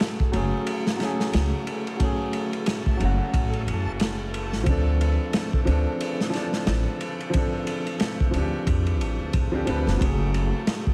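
A swung sixteenth-note groove in 4/4 drives this brooding, melancholic trip hop fragment, cut from a longer piece, with a crunchy breakbeat kit that sounds gritty and saturated, its punchy kick, dark cymbals and rolled-off top sitting up front. A woody, thumpy pizzicato upright bass joins at 0.3 s, and a felt-muted upright piano plays mellow, intimate accompaniment colored by harmonic tremolo, a low-pass filter and tape echo. Beneath them, a very quiet reversed texture swells with a dreamy, detuned, granular brightness, all wrapped in vinyl crackle and small room ambience.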